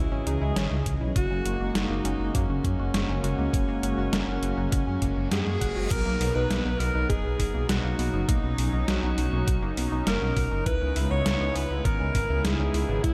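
A breathy alto saxophone carries the melody in a jazz style, its clear subtone colored with vibrato, scooped notes and a trailing delay. This cinematic, nocturnal synthwave passage, cut from a longer piece, moves in a straight 4/4 over a deep, rumbling detuned saw bass that sits up front with a saturated, beating edge. A warm analog pad holds sustained chords with chorus, tremolo and sidechain pumping, while a round analog pluck plays arpeggios in the background, shaped by a filter sweep, cassette tape character and tape echo. A thumpy electronic kick enters at 0.9 seconds beside a detuned 8-bit drum machine supplying crash cymbal, hi-hat and a medium-tuned snare, both re-recorded in a small room. A very quiet reverse cymbal at 5.1 seconds leads into a second section at 5.9 seconds, where a mellow FM electric piano with a soft pad layer adds a faint second line. The dreamy mix is soaked in plate reverb.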